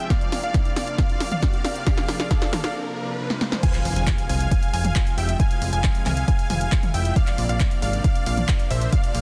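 Uplifting trance at 136 BPM in F harmonic minor, this euphoric, soaring cut from a longer piece opens on a build-up where a riser climbs over drum-machine fills of toms, snare and handclaps, with a tape-warm kick out front, before crashing into the drop at 3.6 seconds with an impact as a huge, detuned supersaw lead carries the melody through dub echo and a low-pass filter, backed by a wave-folded pluck counterline, a lush, warbling chorused pad, a punchy snare with soft clipping, and a funky, plucky sawtooth bass that enters at 3.9 seconds, the synths and bass pumping together in a dense, heavily limited master.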